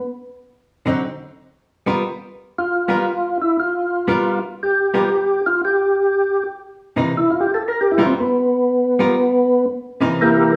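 This short excerpt of greasy, soulful jazz opens with a dark, clean archtop guitar entering at 0.9 seconds, its picked, compressed hollow-body tone sitting up front as it comps over a D7b9 moving to G7#9. The tempo is a swung 118 BPM in 4/4, centred on G mixolydian. At 2.6 seconds a percussive tonewheel organ takes the lead with a solo line, its full, lightly overdriven voice coloured by second-harmonic percussion, chorus vibrato and a slow rotary speaker. The organ sits up front and a touch louder than the guitar, carrying the melody while the harmony shifts to C7#9 at 6.1 seconds. The band sounds as if it is playing live together in a small stone room, with a reverb that gives the performance an intimate, lively ambience.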